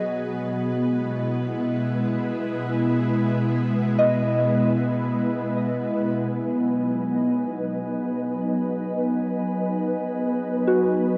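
In free time, this weightless ambient excerpt in B major floats on an ethereal, airy synth pad of detuned, chorused sustained chords moving from E/B to B at 6.2 seconds, while a soft, pure FM synth bell traces gentle arpeggios through chorus and tape echo, and a glassy glass harmonica texture enters at 6.2 seconds, all set in a huge, wet reverb with an 8.1-second tail.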